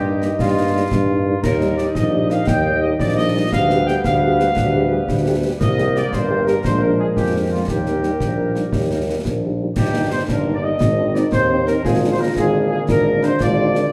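A clear, up-front tuba drives the bass of this festive, spirited military-style wind band march in 6/8 at 115 BPM in Eb major, under a dark trumpet section carrying the melody, a warm, close-miked woodwind section on a second line, very quiet soft-attacked horns and sustained trombone chords, and close, dry concert snare, bass drum and clash cymbals, with a mellow euphonium joining the second line at 9.8 s, all heard from further back in a large, reverberant studio in this passage cut from a longer piece.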